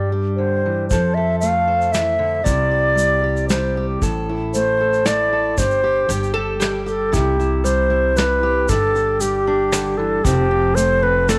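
Acoustic folk for a duo or small band, this gentle excerpt moves at 116 BPM in 3/4 with a straight feel in C major. A reedy baroque flute carries the melody up front, its pure wooden tone shaded with vibrato and tongued notes, while a fingerpicked steel-string acoustic guitar supplies the accompaniment beneath it. An upright bass adds woody, thumpy pizzicato from gut strings, and at 0.9 seconds a soft brush drum kit with a dark, rolled-off top and tight kick joins alongside a grainy, mellow tube shaker. Briefly, from 6.1 to 7.1 seconds, a metal-body resonator slide guitar slips in a bright, nasal, metallic second line played with fingerpicks. The harmony moves through G5, F, Cadd9, Am and Gsus4 before arriving at C as a new section begins at 7.1 seconds, all set in light reverb and studio ambience.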